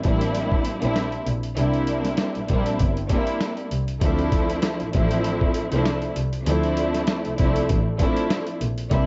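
Boom-bap hip-hop in D minor at 98 BPM with a 56% sixteenth-note swing, this dark, tough cut sets a lush, up-front bowed string section with vibrato and portamento, given a cassette-tape tint and filtered top and bottom, over a close, nasal bowed double bass and a gritty, pitched-down sampler-style kit with a thumpy kick and compressed snare and hi-hat, all in a small room with light reverb and vinyl crackle, moving from C9 to Dm9 at 4.0 seconds.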